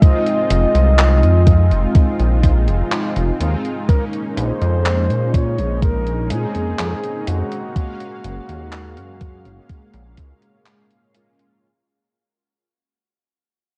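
Faded and woozy, this short vaporwave fragment drifts at an unhurried straight pace in 4/4, cut from a longer piece and fading out from 1.3 seconds onward. A mellow flugelhorn carries the solo melody in a jazz style, with vibrato and scooped notes, its tone roughened by vintage 12-bit sampler grit and trailed by tape echo. Beneath it, round, detuned synth brass with analog chorus and vibrato fills out the accompaniment, while a warbling, nostalgic tape-like pad sits in the background with slow-attack sustained chords, ring modulation and its own built-in reverb. A thumpy, up-front electronic kick drum anchors the beat alongside a gated 80s digital drum machine playing handclaps and hi-hat, and a glossy, evolving chorused synth bass with a pulse-width-modulated edge and filter sweeps enters at 0.5 seconds. The harmony moves from Fm7 to Bbm11 to Gbmaj9, all wrapped in a dark, cassette-tape production.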